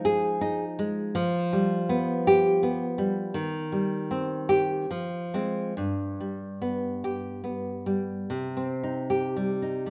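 A fingerpicked nylon-string guitar carries this romantic solo piece on its own, sitting up front with a bright, deep classical tone and the occasional finger squeak audible on the strings. The mood is wistful and intimate, moving in 3/4 at a rubato pace that drifts between 69 and 84 BPM in C minor. The guitar ranges from G2 up to Ab4, tracing a progression that starts on Fm7, passes through G7/F, Cm/Eb, Fm and G, and settles on Cm at 8.3 seconds as a new section begins. A moderate recital hall reverb gives the notes a gentle, natural tail around the instrument. This short passage runs just under ten seconds and is cut from a longer piece.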